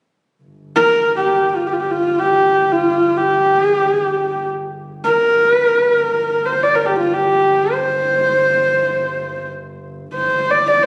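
A vast, windswept mood hangs over this short cut from a longer Mongolian folk piece, played in free time. A single bowed double bass holds a low, pure drone from 0.4 seconds, its soft-edged, floating sul tasto tone sitting quietly beneath everything. At 0.8 seconds a lone horsehead fiddle takes the melody in its middle register, husky and rich on its horsehair strings, with an airy bow, gentle vibrato and sliding portamento between notes. The fiddle sits close and up front, intimate against the quiet bass. A moderate concert hall reverb surrounds the pair, though the phone-in-the-room capture adds a club-like ambience, and both parts carry on to the end at 10.9 seconds.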